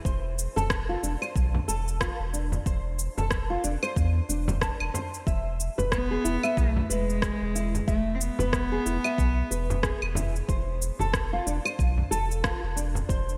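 Organic downtempo with a mystical, warm mood and a swung sixteenth feel, where thumb-plucked nylon-string guitar arpeggios dressed in chorus and delay sit over a round, pumping sub bass, a deep layered electronic kick, overdriven electronic shaker, rim click and claves with gated reverb, and a soft-handed acoustic frame drum, while a reedy, gut-string cello bows the melody with delay from 5.9 to 10.2 seconds in a bright 1980s-style digital production with light room reverb.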